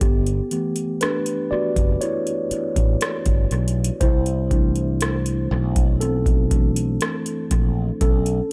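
A late-night, longing mood settles over this slow contemporary R&B excerpt, moving at 60 BPM in a straight 4/4. A mellow tine electric piano carries the accompaniment and takes a solo across the whole 8.5 seconds, its clean, warm tone heard through built-in speakers and trailed by analog delay. Beneath it, a fretless electric bass sits up front with a bright, direct and amped sound, thickened by lush chorus. A booming analog drum machine supplies kick drum, hi-hat and rim click, pairing a deep kick with metallic hats, with overdrive giving grit, and it is re-recorded in a small room. The harmony moves from G6 to C6 and reaches B7sus2 at 8.0 seconds, all set in light reverb within an echo-heavy mix.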